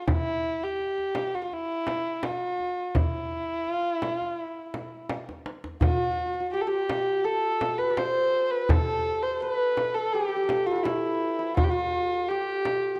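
Heard in a recital hall with moderate reverb, this dark, warm-toned recording places the kamancheh up front. It is a melancholic, longing Persian modal ensemble piece in a straight 4/4 at 84 BPM, cut from a longer work. A single bowed kamancheh carries the melody between E4 and C5, its woody, shadowy tone shaped by vibrato and portamento and finished with a smooth top. Beneath it, a tight acoustic tombak and a small, close and dry frame drum played with soft hands keep the pulse, the frame drum adding a bright edge. A drum fill from 5.1 to 5.8 seconds ushers in the second section, where a hammered santur enters as a second line between E4 and D5, its bright, shimmering strings ringing on until the excerpt closes at 13.0 seconds.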